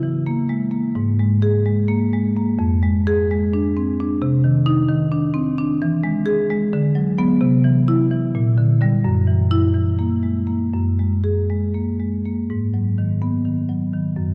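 This contemporary classical excerpt features a solo marimba played with medium mallets, its woody rosewood tone sitting up front across a span from F2 to G#4, in a reflective, flowing rubato over a 7/8 metre at 257 eighth-note beats per minute. A long, wet church reverb surrounds the instrument in a dark, warm production as the harmony drifts through colored chords such as C#m6, Cmadd9 and F#9, before a brief new section opens on G#m7 at 12.5 seconds and runs to the close at 14.3 seconds.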